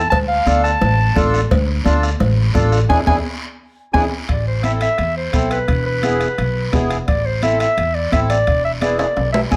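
A solo clarinet in classical style and a woody pizzicato upright bass open this fiery, danceable cumbia in A harmonic minor at 172 BPM. The soft-beater bombo, high-tuned congas in the background, ringing cowbell and timbales, and a raspy, vintage guiro join at 0.1 seconds, and a reedy, airy accordion with slow beating enters at 0.5 seconds. The up-front clarinet carries a plate reverb over a light room sound, and a drum fill with a band accent on E7 at 2.9 seconds leads into a second section moving between Am and E in this short excerpt cut from a longer piece.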